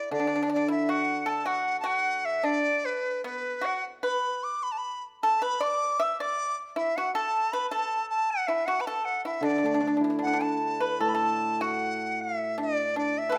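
A bright, reedy dizi and a dry, percussive pipa open this graceful, festive passage of Chinese traditional chamber music together, joined almost at once by a shimmering hammered dulcimer. The dizi carries the melody, its bamboo tone buzzing from the membrane, pure yet tongued and colored by vibrato. Beneath it the fingerpicked pipa plays a second line in a lower register. The dulcimer's ringing, hammered accompaniment drops out after 2.4 seconds and returns at 9.4 seconds to support the final phrases, as the music moves into a new section near the close. Set in 2/4 with a flexible rubato feel, the three instruments sit up front within a moderate recital-hall reverb, in a short passage cut from a longer piece.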